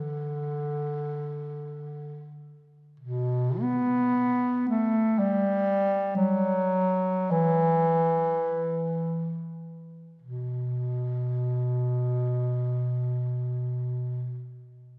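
Lonely and yearning, this short classical passage in B minor features a solo bass clarinet with a mellow, soft-attacked, smooth-topped tone, moving freely in a rubato 3/4 at 30-62 BPM and slowing down from 1.2 to 10.2 seconds, while a wet concert hall reverb places the listener further back in the room.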